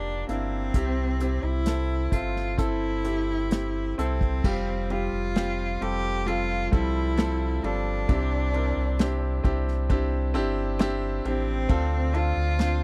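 A rich, bowed cello with vibrato carries the tender, emotional melody of this slow 66 BPM pop ballad in F major, over a clear concert grand piano, a deep sine-toned sub bass with octave, and an acoustic drum kit played with bundle sticks that enters at 0.3 s with dark cymbals and a punchy kick, all in a dry, close 1970s-style studio sound.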